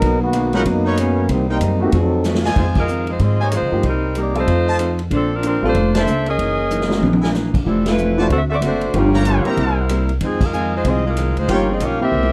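A warm, up-front trombone section opens this brassy, dramatic big band swing excerpt in F minor at 188 BPM, backed from the start by woody pizzicato upright bass, a dark hollow-body electric guitar in the background and a distant, roomy drum kit with a boomy kick, before clear baby grand piano and bright trumpet stabs join at 0.5 seconds and the smooth-topped saxophone section takes the melody at 2.6 seconds, with drum fills and band accents punctuating the swing.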